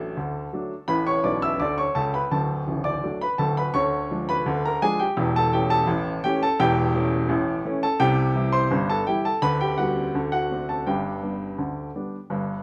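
A warm baby grand piano plays a cheerful, jaunty solo ragtime passage in a straight 2/4. Its short-sustained tone sits up front in a moderate large-studio reverb, with a fill at 1.2 seconds, and chords moving through a diminished seventh toward a resolving G in this excerpt cut from a longer piece.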